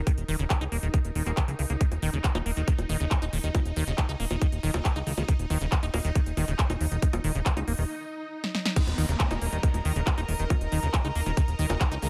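Hypnotic and driving, this short psychedelic trance passage, cut from a longer piece, runs in a straight four-four pulse. A tight, tape-warm electronic kick sits up front alongside a fat, detuned analog bass that plucks through a filter, while a big-room dance kit adds a punchy snare, crisp hats, handclaps, bongos and crash cymbal, all roughened by overdrive. Above them a squelchy, resonant acid bass riff moves through filter sweeps, thickened by chorus and a digital delay and pumping against the kick. In the background a swarming, granular drone holds tense sustained chords in its own reverb, also ducking with the pulse. After a brief break and a drum fill, the drop lands at 8.8 seconds with a soft, floating string section bowing sul tasto and an electronic downlifter sinking beneath the mix, all set in a digital ambience.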